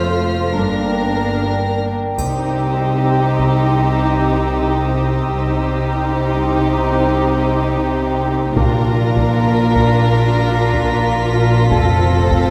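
A wet concert hall reverb bathes this short, mysterious and tense excerpt of a suspense film score in C minor, moving at 75 BPM in a straight 4/4. From the opening, a warm symphonic violin section carries the melody with soft, sul tasto bowing, while a faint, floating high violin texture hovers above it and a background viola section adds dark accompaniment. A glass harmonica sustains ethereal, beating chords with a slow attack, and symphonic cello and double bass sections, the cellos very quiet, lay down a pure, bowed bass. At 2.2 seconds, as the harmony settles on C minor, a distant, woody studio violin section enters with a lush, vibrato second line. A smooth marimba riff played with medium hard mallets and a close, dry taiko ensemble struck with hard sticks arrive at the same moment, joined briefly by a small-room triangle. The chords move from F and G minor through C minor to B flat and back to F. 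The marimba drops out at 12.3 seconds, while the remaining parts ring on until 12.5 seconds.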